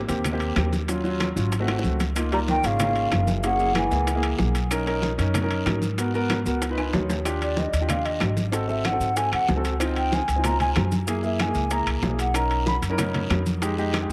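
A fast, straight 4/4 groove at 188 BPM drives this lively, sunny Afro-Cuban jazz excerpt, where a growly, thumpy upright bass and a woody, polished upright piano sit up front over thin-skinned congas, round low bongos, ringing metal-shelled timbales, woody claves, raspy guiro and grainy maracas, while a pure, hollow concert flute with tape echo joins a distant, scooped tenor saxophone from 2.3 seconds before taking a solo from 7.3 seconds over rich ninth chords in a springy reverb.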